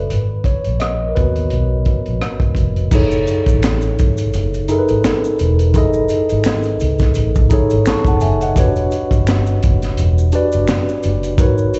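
A mellow tine electric piano with a slapback echo carries the opening solo of this soulful, smooth neo-soul R&B excerpt, moving through G#m9 before settling on F#m9 and later Em9. Beneath it, a round, foam-muted vintage fingered bass and a crunchy, gritty breakbeat kit with a punchy kick, high-tuned snare and dark cymbals give a gently swung groove, while faint maracas and finger snaps join at 2.9 seconds. The whole performance sounds like a live gig heard through the venue's PA, touched by light club reverb with a dulled top end.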